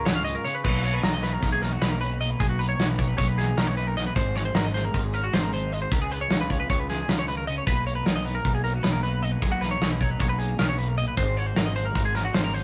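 A loose, up-front indie drum kit with dark cymbals, a tight kick and a medium-tuned snare drives this wistful, intricate math rock and midwest emo fragment in 9/8 at 308 BPM in eighths, set in B lydian. Two clean, twangy twelve-string electric guitars ring out, one up front playing chordal accompaniment and the other in the background spinning high arpeggios, over a fuzz-overdriven fingered electric bass as the harmony moves through C#7, Bmaj7 and G#7. A rough rehearsal-room recording with a moderate booth ambience gives the cut from a longer piece a close, unpolished feel.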